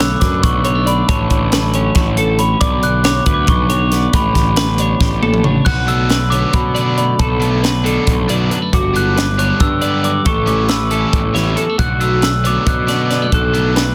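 A dry, dense, heavily limited mix carries this wistful, intricate excerpt of math rock and midwest emo in B minor at 275 BPM in 7/8, where a mellow, bell-like glockenspiel played with soft plastic mallets sings the melody with slapback echo over a twangy twelve-string electric guitar picking arpeggios with the same echo, a second, background twelve-string guitar picking clean accompaniment, a growly fuzz bass and a crisp, airy fusion kit with a high-tuned snare and tight kick up front, while a drum fill at 5.0 seconds leads into the second section, where a raw, double-tracked overdriven garage guitar riff enters at 5.9 seconds as the chords move from Bm7 through Gmaj7 and A7.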